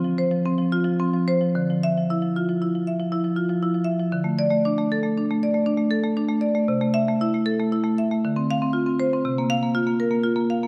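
A solo marimba played with medium hard mallets carries this contemporary classical excerpt, its rosewood bars giving a woody, percussive attack that sits up front in the sound. The piece moves in 5/4 at 117 BPM, yet the rubato feel lets the pulse breathe, creating a hypnotic, reflective mood in D minor. The marimba covers a span from C3 to F5, its bright upper notes ringing against a moderate concert hall reverb that lengthens each stroke into the space. Harmonies drift from Dm7 through Dmadd9 and a bare D5 to C6, return to Dm7 at 8.2 seconds, and close on a C7sus4 at 9.3 seconds. Cut from a longer work, the fragment runs about 10.7 seconds and feels like a brief, inward-looking glimpse of a larger meditation.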